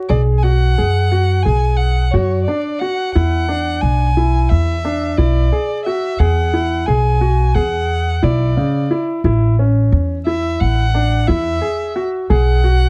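A clear, polished baby grand piano opens this playful, restless contemporary chamber excerpt with arpeggios at 177 BPM in an uneven 9/8. From 0.1 s a single bowed violin carries a smooth melody with vibrato, while an up-front pizzicato upright bass gives a woody, thumpy, gut-string foundation. The harmony moves from B5 to E9 and on to A in E mixolydian, all set in light reverb with a dark production and vinyl crackle.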